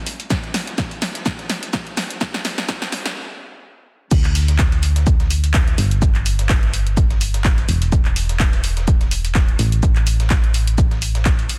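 A feel-good, uplifting piano house groove at 126 BPM in 4/4 with a light 16th-note swing, where a punchy, tape-warm electronic kick sits up front beside a round, dark FM bass that pumps against it, while a punchy analog drum machine adds handclaps, hi-hat, snare and crash. Tucked in the background, a gritty, overdriven sampler-style soul kit contributes hi-hat, shaker and snare. The excerpt opens with a build-up and drum fill, stops briefly at 3.2 seconds, then drops at 4.1 seconds into a dense, heavily limited, nearly dry mix.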